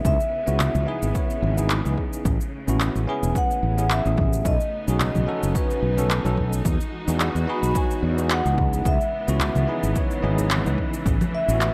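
A growly, up-front fretless electric bass anchors this blissful, sunny sunset chillout excerpt at 109 BPM in A lydian, with a gentle 16th-note swing beneath chords moving from C#m7 through Amaj7, B9 and Emaj9. Above it, a mellow vibraphone with soft mallets and slow motor vibrato carries the melody through digital delay, while a bell-like, barky tine electric piano adds delayed accompaniment and a lush, bowed studio string section holds smooth sustained chords. A punchy, overdriven electronic kick and layered electronic cabasa, handclaps and congas drive the groove, joined by very quiet, thick-skinned acoustic congas until 10.8 seconds, all within a dark, warm production with light reverb.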